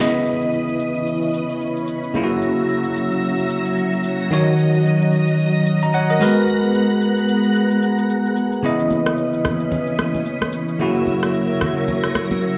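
Amapiano at 111 BPM in C# dorian, with a hypnotic, late-night mood and a swung sixteenth-note feel across this short excerpt, cycling through C#m9, F#7/C#, D#m7 and G#m9. A bright, bell-like tine electric piano sits up front, carrying the accompaniment over a vintage, organ-like ensemble string pad with soft attack and chorus, while a layered electronic shaker and rim click keep time from 0.1 seconds. High-tuned congas with a thin, damped skin join in the background at 8.9 seconds, all within a dry, gritty sound touched by light digital reverb and small-room ambience.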